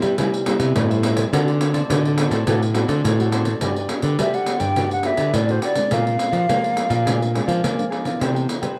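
Samba and choro in G major at 105 BPM, this festive, playful excerpt sets a crisp, picked cavaquinho in the background beside an up-front fingerpicked classical nylon-string guitar, both with a cassette-tape tint, over a thumb-plucked nylon-string bass guitar and a jingly pandeiro struck with hard hands. A breathy, expressive concert flute with vibrato and lifted highs, also tape-colored, carries the melody from 4.2 to 7.6 seconds as the harmony moves from Cmaj7 and D7 through Gmaj7 and Bb9 to Cmaj9. The whole home cassette recording sits in light reverb.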